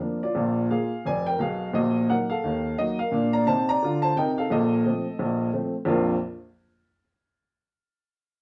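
Stride piano jazz in Bb major, playful and swinging at 174 BPM in 4/4 with a lilting swung eighth-note feel, in a short excerpt cut from a longer piece. A lone upright piano carries everything from 0.0 to 6.2 s, its woody, natural tone sitting up front with long sustain across a span from F1 to Bb5, moving through Bb7, Ebm/Bb and F7/Bb before settling back on Bb. A moist studio reverb gives the sense of players performing live together in one room.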